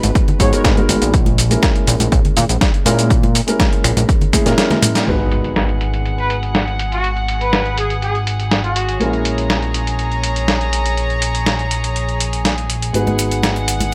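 A straight 4/4 nu-disco groove, sleek and cosmic, rides on a gritty, overdriven sampler-style kit of finger snaps, hi-hat, shaker, snare and toms, joined by a punchy electronic kick up front until 4.4 seconds, a fat, nasal, saturated analog bass pumping to the sidechain, a dark grand piano with audible action noise and delay, and bright, dry congas and cabasa in the background, before a very quiet electronic impact and distant, gut-string violins with light vibrato arrive at 5.1 seconds as a filter sweep runs over the kit, and a mellow, roomy trumpet section with tape echo carries the melody from 6.2 seconds.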